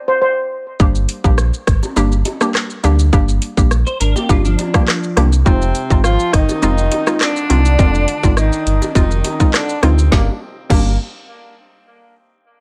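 Dancehall at 103 BPM in G phrygian, bouncy and tough, this excerpt opens with a brief shimmering steel pan note touched with delay before a gritty, sampled drum kit with a tight kick and woody snare arrives at 0.8 seconds alongside a deep, full sub bass and a hollow square-wave pluck with chorus. Quiet, high-tuned bongos sit distantly from 1.8 seconds, and a twangy, clean electric guitar plays arpeggios briefly from 3.9 to 5.3 seconds. A mellow horn section with vibrato and delay takes a second line from 5.5 seconds as the harmony moves from Gm to Fm7, all in a dry, up-front mix.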